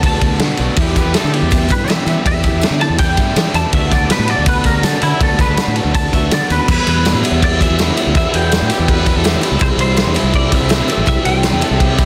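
A clean, hollow-bodied electric guitar solo with ensemble chorus and tape echo opens this cool, restless indie rock excerpt at 163 BPM in E minor, carried over a biting, double-tracked overdriven guitar riff, fingered electric bass and a punchy, saturated drum kit up front in a small room; from 0.8 seconds a faint, jingly tambourine joins and a raspy, growling trumpet in the background surfaces briefly, returning at 8.7 seconds, all within a dense, heavily limited modern master.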